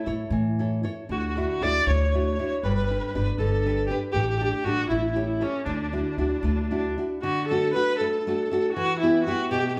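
Lively and sunny, this brief excerpt of an Italian folk serenade sways in a rubato 6/8, with a rich, expressive bowed viola singing the melody with vibrato, soft attacks and sliding portamento, sounding somewhat distant yet up front. A fingerpicked nylon-string guitar supplies deep classical accompaniment while a woody, growly pizzicato upright bass underpins the harmony until 6.9 seconds. The trio plays live together in one room, bathed in a wet large-studio reverb, as the harmony moves from A through Dadd9, G and A7 before settling on D and Em.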